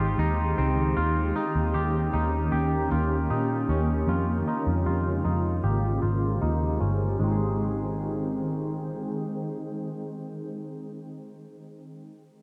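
A round, foam-muted electric bass sits up front in this dreamy, ethereal dream pop excerpt, its dark, amped tone anchoring a straight 4/4 pulse through changes from Abmaj7 to Eb7, Db6/F and back. Above it, a clean, bright electric guitar picks twangy, scooped arpeggios through lush chorus and tape echo, while a shimmering pad of detuned sine voices with octave-up shimmer holds slow-blooming granular chords until 11.1 seconds. A filter sweep runs through the opening 7.2 seconds, and the whole mix is soaked in a huge ambient reverb.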